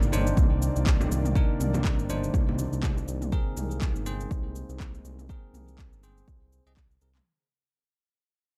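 Warm and spiritual, this short afro house excerpt at 122 BPM swings gently in 4/4 over a Cm9 chord that moves to Abadd9 at 3.3 seconds, with the whole passage fading out. A detuned, warbling analog pad with lush chorus and a bell-like tine electric piano playing filtered stabs with tape echo both pump against the sidechain and carry filter sweeps, while a smooth sawtooth synth bass holds the low end. A house kit of cabasa, handclaps and toms and distant, ringing congas play from the start, the congas dropping out at 2.9 seconds, and a punchy, overdriven electronic kick enters up front at 0.4 seconds, all in a dark, dry production.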